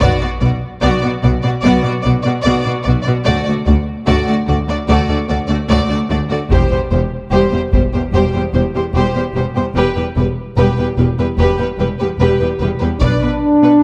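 Cinematic, epic orchestral film score in B phrygian at 74 BPM, building with a heroic intensity over Bm, D and C/E harmony. An intense, vibrato-rich violin section carries the melody above a softer, distant second violin line with expressive portamento, while lush violas sit smooth in the background and focused chamber cellos join bowed double basses to anchor the low end. Taiko drums struck with hard sticks punctuate at 0.0 and 6.5 seconds and return at 13.0 seconds, when a mellow, up-front French horn section arrives on a sustained D4 chord, all set in a dark scoring-stage reverb.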